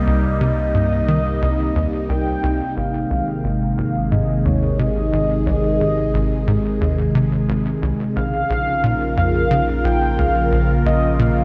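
Opening at 0.0 s, a swirling, phased analog pad sustains chords from Cm7 through Ab to Bbm at 8.2 s, alongside a shimmering pulse-width lead carrying a retro melody with chorus and tape echo, over a deep sine sub bass. From 0.1 s a tight, punchy sequencer bass drives a sawtooth riff with lush chorus and tape echo, giving this cosmic, expansive fragment of ambient space music its motion at 89 BPM in 4/4. The dreamy, cassette-toned mix is soaked in plate reverb, with the pad sitting up front.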